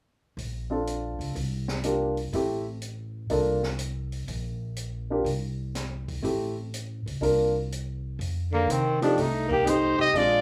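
Swung eighth notes drive this 4/4 small-group jazz piece in F major at 123 BPM, with a sophisticated, warm mood. From 0.4 s, an up-front pizzicato upright bass with a woody, steel-string tone sits over an acoustic kit whose hi-hat, boomy kick and high-tuned snare sound natural in a studio room. A warm baby grand piano joins at 0.7 s, sitting forward and voicing changes that move through Bbmaj7, C7sus4 and Am7 before reaching F7. At 8.5 s, a clear, punchy trumpet takes the melody with light vibrato, forceful and present under a plate reverb. Alongside it, a raspy, gritty tenor saxophone plays a growling second line with its own slight vibrato. The light reverb of a small room ambience frames this short cut from a longer piece.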